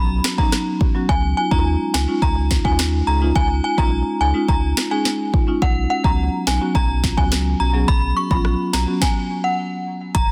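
An electronic afro-pop drum kit sits up front in this bouncy, summery dancehall excerpt at 106 BPM, its deep kick, sharp snare, rim click and metallic hats setting a straight 4/4 groove over a round, sustained sine sub bass. A woody marimba with medium mallets carries the accompaniment with sidechain pumping in a boxy small room, while a mellow, inharmonic FM synth chime rings out the melody through ensemble chorus and tape echo over Bsus2 and C#add9. At 9.0 s a stop arrives and the marimba drops out, leaving the chime, bass and drums in a dry, dense, heavily limited mix.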